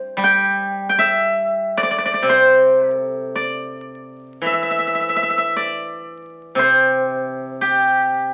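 Serene and elegant, this short fragment of traditional Chinese solo plucked-string music features a steel-string zither, played with fingerpicks, ringing up front in a silvery acoustic tone as it moves freely in rubato over a 2/4 metre across 8.3 seconds, all set in light reverb and carrying the crackle of a very old 78 rpm record.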